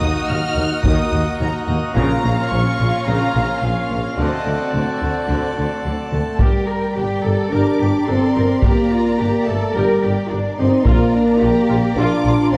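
The mellow French horn section stands out in this heroic, epic orchestral film-score excerpt at 108 BPM in 4/4, sustaining tight chords from 0.8 s above lush, vibrato-rich strings: a smooth violin melody, a focused second violin line and rich violas in the background, with expressive cellos, woody double basses and a background tuba anchoring the bass. A brilliant, full pipe organ plenum holds sustained chords through the opening passage, moving from Ebm toward D7 before it stops at 6.4 s, where the music settles into G minor. Taiko drums struck with heavy sticks punctuate the texture in two bursts, all set in a dark production with a wet scoring-stage reverb.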